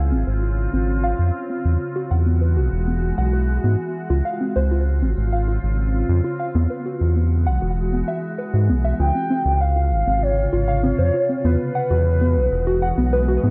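In a straight 4/4 pulse, this wistful, glitchy IDM excerpt sets a round, deep analog bass up front beneath a glassy, ethereal FM pad with ensemble chorus and dusty, detuned pluck arpeggios smeared by dub echo, before a mellow, nostalgic lead with vibrato and portamento enters at 9.0 s, all wrapped in light reverb and the worn pitch drift of old cassette tape.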